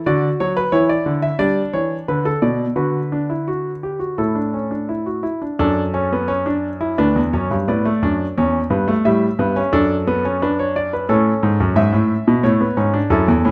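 Straight 4/4 at 87 BPM drives this elegant, lively baroque-style three-part fugue in D major, cut from a longer piece, played on solo grand piano from D2 to E5 with a polished, intimate, up-front tone, short sustain and audible action noise, set in a moderate recital-hall reverb and caught by close, detailed microphones, with a new section at 5.6 s passing through D/F# and C#dim/E before settling on A by 13.5 s.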